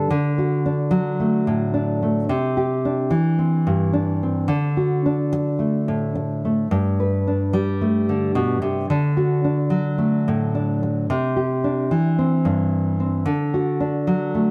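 A light reverb surrounds a dark, full-bodied nylon-string guitar that sits up front and plays solo for the whole 14.5-second excerpt, thumb-plucked with a deep classical tone between G2 and B4. This carefree, warm highlife moves at 110 BPM in a straight 4/4 in D mixolydian, tuned to A4 = 437 Hz. The guitar cycles from D through Cadd9 and Gsus2, always returning home to D.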